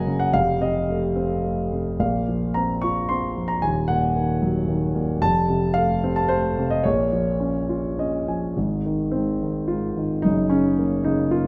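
A dark, mellow concert grand piano plays alone from the start, a lyrical classical solo in Bb minor with a cool, brooding mood, moving in a rubato 3/4 at roughly 102-115 BPM over chords such as F, Bbsus2 and Ebm. The piano sits up front with a deep bass and a smooth, vintage character, spanning Eb1 to Db6 inside a moderate scoring-stage reverb. A short piano fill at 7.7 s leads into a new section at 8.6 s that moves through Ab6 and Gb before this fragment of a longer piece breaks off at 11.5 s.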